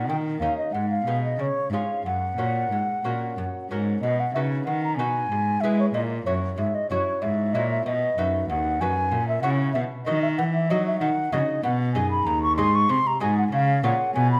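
A flowing, dance-like 3/4 lilt at 94 BPM carries this baroque-style sonata movement in F# major, shifting to B major at 4.0 s. Throughout, a pure, woody baroque flute with vibrato sings the melody up front over a bright, fingerpicked lute with double gut strings and a rich, reedy bowed cello holding the bass, all set in a moderate recital hall reverb.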